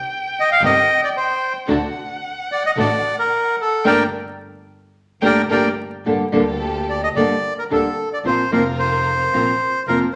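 Tango at 110 BPM in G minor, dramatic and sultry with a rubato feel: this fragment of a longer piece puts a reedy, bright bandoneon melody up front over a dark, fingerpicked nylon-string guitar, while a bowed violin with vibrato and a smooth top carries a second line until 5.7 seconds, a lush, focused string section adds stabs in the background, a biting, airy-bowed double bass plays the bass, the band hits an accent from 3.9 to 6.1 seconds, and a large wet reverb and vinyl crackle color the sound.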